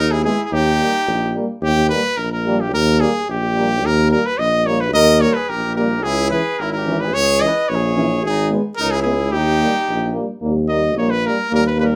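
Bittersweet and virtuosic, this Balkan folk brass passage in Eb phrygian dominant moves at 109 BPM in a straight 2/4, with a brilliant, close-miked trumpet carrying the melody up front, a distant, roomy tuba anchoring the bass, a clear flugelhorn adding a second line in the background briefly at the start and again between 5.0 and 10.2 seconds, and a French horn with light vibrato and a smooth-topped euphonium filling in accompaniment, all in a classical style with wet studio reverb as the band plays live in one room, while the trumpet takes a solo at 10.4 seconds over the continuing band.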